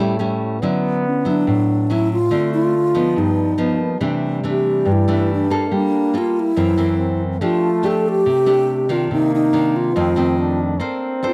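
A dry, close studio sound with a 1970s character frames this sunny, breezy bossa nova fragment, taken from a longer piece and moving at 141 BPM in a straight 4/4. Up front, a fingerpicked classical nylon-string guitar lays down warm, acoustic accompaniment through jazzy changes such as Dmaj9, Gaug7 and F#7#11, while a breathy, mellow trombone with scooped notes and a smooth top carries a quieter second line. From 1.1 s the alto flute takes the melody with a hollow, straight tone, crisp attack and a touch of slapback echo, close-miked and up front.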